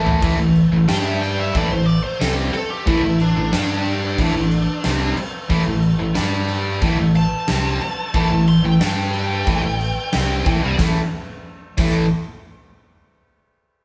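A drum fill opens this aggressive, heavy hard rock excerpt in A minor, as a big acoustic kit with a fat snare, tight kick, crashes and toms sets a straight 4/4 pulse at 91 BPM. Two picked electric guitars drive the riff from the start: one bright and overdriven up front, the other distorted and sitting further back in the mix. A fingered electric bass adds a dark, round, punchy low end through an amp. At 0.9 seconds a high-gain lead guitar, picked with a dark, distorted tone, takes a solo that runs until 10.8 seconds over a cycle moving between A5, G5 and A minor. The band plays live together in a stone room whose reverb lends the whole performance a lively, resonant space, before the passage closes on A5.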